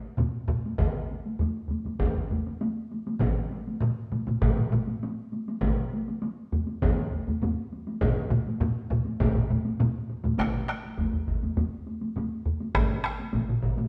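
Japanese traditional taiko drum ensemble music, powerful and driving, moves in a straight 4/4 at about 100 BPM and speeds up throughout this short cut from a longer piece. Four taiko parts carry the whole recording, all up front. Two are struck with heavy sticks, one with a vintage, band-limited tone and the other close and dry. The remaining two use hard sticks, one also close and dry, the other distant with a large-room sound. One of the heavy-stick parts drops out after 2.4 seconds and returns at 6.5 seconds, and a new section arrives at 10.4 seconds. The group plays live in one stone room whose reverb gives the drums a wet character, while the top end stays dark.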